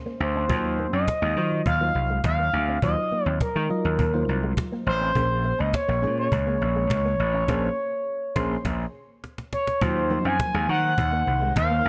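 A straight, slick groove of woody, close cajon and gritty, overdriven slap bass drives this funky snippet of early-eighties boogie funk, with a very quiet, twangy envelope-filtered electric guitar riff tucked beneath a mellow, warbling FM electric piano carrying chorus and tremolo. Up front, a smooth, expressive synth lead with vibrato sings the melody over minor ninth chords, while a band accent at 7.5 seconds brings an electric piano fill and then a short drum fill. At 9.8 seconds a silky string machine slips in behind the band, all set in light reverb and bright digital production.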